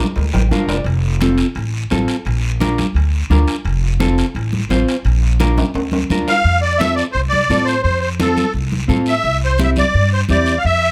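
A reedy musette accordion, shimmering with its wet tuning, steps up front at 6.3 seconds to carry the melody through the closing part of this festive, danceable cumbia excerpt. Beneath it, a woody, thumpy upright bass plays pizzicato on steel strings, sitting prominently in the mix. A dark, clean electric guitar, played with the fingers, provides mellow accompaniment and opens with a brief fill. The percussion comes from a small acoustic room: hard-handed, thick-skinned congas set back in the background, a raspy guiro, and ringing metal-shell timbales that drop out at 6.4 seconds as a drum fill winds down. The harmony moves between Bb and F before turning to C near the end. The close, detailed miking and near-dry sound keep every part crisp, and the clip is cut from a longer piece.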